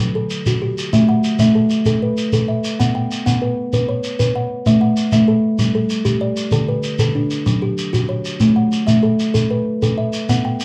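Hypnotic and warm, this brief fragment of a longer piece draws on southern African traditional music, built around an mbira-style interlocking cycle in 12/8 at 128 BPM counted in dotted quarters, with a straight feel in A mixolydian. A kalimba carries the whole passage with arpeggios ranging from D3 up to G5, its woody, fingertip-plucked tone sounding soft, short and mellow, set up front in a boxy small room. A shekere joins at 0.3 s, adding grainy acoustic percussion that carries the air of a large room. The harmony opens on F#m before moving through A5 and B5, back to A5, then G5, D5 and F#5 before returning to A5. The recording is dry and close, with the feel of a 1970s studio session and little reverb.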